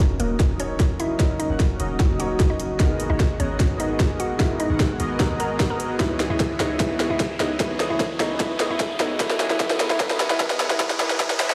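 A half-time 4/4 pulse at 150 BPM drives this bittersweet, dreamy future bass cut in G# minor, where an overdriven, hard-clipped kick and a trap kit of sharp snare and bright hats sit up front over a deep, boomy 808-style bass, all building through a drum fill and filter sweeps across chords moving from D#m7 through G#m9 and C#m9 to F#9sus4. A woody, round FM mallet pluck carries the melody with a vintage warble, while a fat, nasal, detuned sawtooth polysynth plays a bold riff and a clear baby grand piano with audible action noise adds intimate accompaniment in the background, the pluck, polysynth, piano and bass all pumping with sidechain. A very quiet, ethereal pad with octave-up shimmer hovers beneath, a faint riser enters at 4.4 s, and a lush hall reverb and bare-room playback give the whole section a large, airy space.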